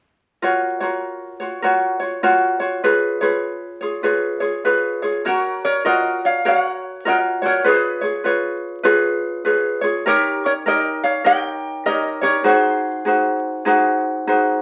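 Dreamy and sunny, this short excerpt of Hawaiian music moves at an easy 100 BPM in 4/4 with a gentle swing on the eighth notes, set in F# major and tuned slightly sharp of standard pitch. A light, fingerpicked ukulele carries the accompaniment from 0.4 seconds, sitting up front and holding the harmony through F#maj7 and C#7 on its own for the opening stretch. At 5.3 seconds a lap resonator guitar takes up the melody, played with slide and fingerpicks, its metallic, nasal tone ringing close and present until 13.1 seconds. Beneath it the chords shift from F#maj7 and C#7 to D#7 and then G#7 over D#, giving the second passage a gentle lift before the ukulele closes out at 14.6 seconds. The whole thing sits in a wet studio reverb and carries the crackle and aged character of a very old 78 rpm record, lending it a nostalgic, far-off glow.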